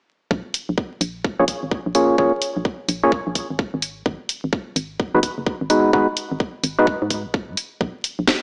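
A skippy, bouncy two-step garage groove swings in 4/4, built on a tight, layered electronic kick and a garage kit with hi-hat and a cracking snare, both up front in studio reverb. Beneath them a dark, hollow FM bass with a decaying, organ-like tone moves from Bbm7 to Abm7, while from 1.4 s to 6.9 s a mellow, up-front stab of sine, triangle and a noise layer, treated with chorus and digital delay, sounds over the chords. The short excerpt, cut from a longer piece, sits in a moderate digital room with vinyl crackle and a small-speaker colour.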